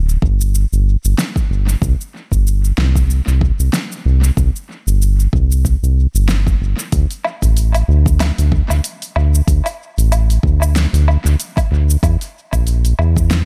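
Meditative and mystical, this organic downtempo excerpt cut from a longer piece rides a lightly swung 4/4 groove, anchored by a round, dark analog bass that sits up front, blending sawtooth and sine tones with a fast attack and sustained notes, pumping under sidechain from the opening second. A deep, tape-warm electronic kick re-recorded in a small room joins at 0.2 seconds, while a layered deep house kit of hi-hat, shaker, fat overdriven snare and woodblock sits further back, soaked in tape echo. The mix is dry of reverb yet echo-heavy, moving from its first section into a second at 6.9 seconds.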